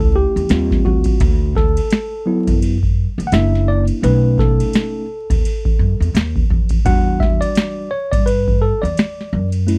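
A booming analog drum machine, with a deep kick, crisp snare and metallic hats, opens this mellow, smoky jazz-hop excerpt alongside a woody, growly pizzicato upright bass and a worn, slightly out-of-tune tine electric piano that takes the solo throughout its 9.8 seconds. The swung groove moves through lush chords such as F#m7, B9 and Em9, with light overdrive on the piano, heard through its built-in speakers, and overdrive on the drums as well. All three parts sit up front in a dry, close 1970s-style studio sound dusted with vinyl crackle.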